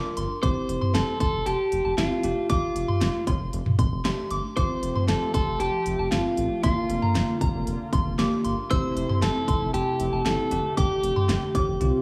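A straight 4/4 groove from a punchy, up-front pop drum kit with fat snare, crisp hats, cowbell and toms drives this wistful, nostalgic synth-pop excerpt, where a round analog bass and a bell-like tine electric piano support a slightly broken-up, twangy electric guitar melody with analog delay, a soft FM synth bell warbles above with chorus and delay, a brassy analog pad joins with sustained chords at 4.6 seconds, and a drum fill arrives at 11.8 seconds, all set in a small, lightly reverberant room.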